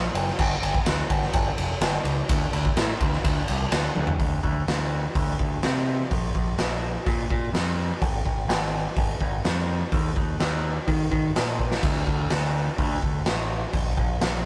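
A growling, overdriven electric bass opens this brooding alternative rock excerpt, picked and sitting up front with a bright, amped edge, its range spanning the low register up into the middle. A raw garage drum kit joins almost at once, built from a boomy kick, a medium-tuned snare, hi-hat, toms, and crash and ride cymbals, all captured in a bright stone room that pumps and saturates the kit into a gritty sound with a rolled-off top. The piece moves in a steady, straight four, following a quiet-loud design that gives it a cathartic pull. A drum fill at 4.0 seconds leads into a new section at 4.2 seconds, and another fill arrives at 11.6 seconds as that longer passage drives on. The whole take has the rough, unpolished feel of a rehearsal room, with tube saturation and a light reverb thickening the sound.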